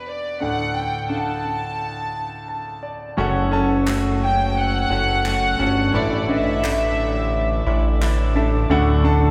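Drenched in a long cathedral reverb with the band playing together in one room, this anthemic, hopeful piano-driven pop passage at 87 BPM opens on a clear, polished concert grand and a soft-edged, floating violin section carrying the melody, the piano adding a fill just before 3.2 seconds, when a glossy, nasal chorused synth bass, a clean, picked electric guitar riff and hollow stopped-flute organ chords with tremulant join, followed at 3.9 seconds by crisp handclaps in the background, while the violins fall away at 7.7 seconds.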